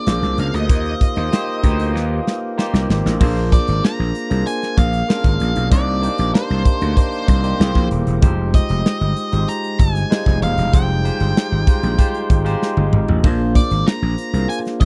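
Polished 1980s jazz-funk pop in F dorian at 96 BPM, this bittersweet, nocturnal piece is cut from a longer track and moves through chords like Bb7, Cm9, C7b13 and Fm9. A dark, fuzzed-out octave lead guitar carries the melody over a barky tine electric piano bathed in lush chorus, while a growly, overdriven slap bass sits up front with a punchy attack. A polished, airy studio drum kit with bright cymbals and a tight kick drives the groove, with fills at 1.9 and 12.6 seconds, all captured in a dry, close small-room sound.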